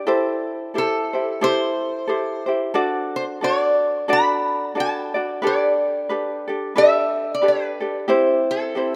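A metallic, nasal lap resonator guitar, played up front with slide and fingerpicks, carries the melody from 0.8 seconds over a mellow, lightly fingerpicked ukulele accompaniment in this sunny, relaxed Hawaiian passage at 90 BPM in a swung 4/4, moving through Am7, D, Gadd9 and C under a moderate plate reverb in a rough home demo mix cut from a longer piece.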